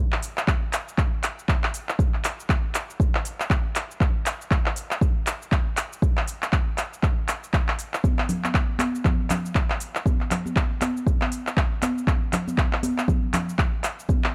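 House groove at 119 BPM in 4/4, spiritual and driving, with a swung sixteenth feel, cut from a longer piece. An up-front, tape-warmed electronic kit of cabasa, handclaps and metallic hi-hats sits in studio reverb over a deep, layered electronic kick that was re-recorded in a small room. At 8.0 seconds, ringing, high-tuned acoustic congas join, close and dry with hard hands, and the whole has a gritty, hardware-recorded sound.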